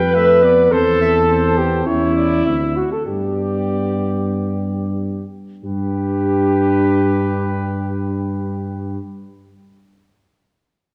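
Trumpet, flugelhorn, French horn and tuba open this triumphant classical brass quintet excerpt together, with a soft-attacked euphonium joining in the background at 0.1 seconds. The punchy, distant trumpet carries the melody over the flugelhorn's roomy second line and the smooth-topped French horn, all three mellow and the latter two touched with light vibrato, while an up-front, dark tuba anchors the bass. The pace slows through the first 5.6 seconds, and a wet scoring-stage reverb surrounds the quintet.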